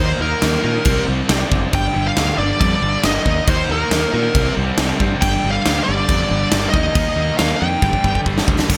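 Bright 1980s-style digital production with light small-room reverb frames this menacing, driving hard rock passage in G minor at 138 BPM, where a huge arena drum kit with gated reverb and a punchy kick enters at 0.4 s and closes with a fill at 7.8 s. A smooth overdriven lead guitar carries the melody up front through digital delay, over two riffing guitars in the background: a crunchy one with subtle chorus and a compressed, distorted one, while a growly fingered bass sits underneath. A gritty tonewheel organ, very quiet, holds sustained chords through a slow rotary speaker with key click as the harmony moves among Eb5, C5 and G5.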